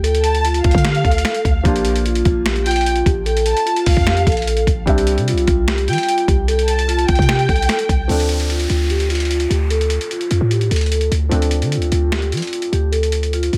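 Hard-hitting and dark, this half-time trap and hip hop cut from a longer piece moves at 149 BPM in D minor, its chords shifting from Dm through Bb and Cadd9 before settling on Dm7 at 8.1 seconds. A gritty, compressed sampler-style drum kit sits up front with a thumpy kick, a medium-tuned snare, hi-hat and finger snaps, while a deep, boomy 808-style bass with a fast attack and decaying sine tone anchors the low end alongside it. A vibraphone played with soft mallets carries the melody through a low-pass filter, its metallic, ringing tone colored by slow motor vibrato and a boxy small room. From 0.2 seconds a distant, lush violin section adds a woody, bowed second line with a soft attack and digital delay, dropping out at 8.1 seconds as an electronic downlifter sweeps in. Underneath, a felt-muted upright piano enters at 1.6 seconds, intimate and mellow with thin felt, short sustain and audible action noise, all set in light reverb.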